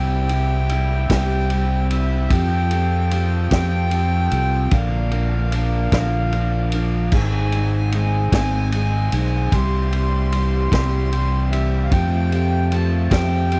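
Nostalgic and open-road in mood, this folk rock and heartland rock excerpt moves at a slow 50 BPM in 6/8, with a reedy, airy accordion carrying the melody over picked steel-string acoustic guitar in the background and a bright, overdriven, double-tracked garage guitar riff touched with spring reverb. A round, up-front fingered electric bass anchors the low end, a vintage kit with dark cymbals and a punchy kick enters at 0.3 seconds, and a very quiet, flute-like tonewheel organ holds soft chords through a slow rotary speaker. The chords cycle through C, Fadd9, Bb and Ab, captured in a dry, close 1970s-style studio sound.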